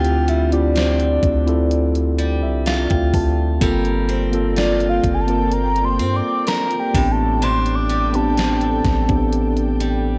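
A dry, gritty hardware recording in a digital ambience frames this sensual, longing contemporary R&B excerpt, where a gated 80s drum machine with a thumpy kick, overdriven gated-reverb snare and hi-hat sits beneath a deep, up-front 808-style bass of long sine tones. A mellow tine electric piano accompanies and plays a fill from 1.7 to 3.6 s, a bright, boxy picked steel-string acoustic guitar with finger squeak adds arpeggios, and a round, dark octave-layered synth lead with chorus and vibrato carries the melody, while a very quiet electronic downlifter sounds early on. From 4.3 s an ethereal, airy detuned pad adds sustained chords in the background as the harmony moves from Dm11 through Gm11 to Am11.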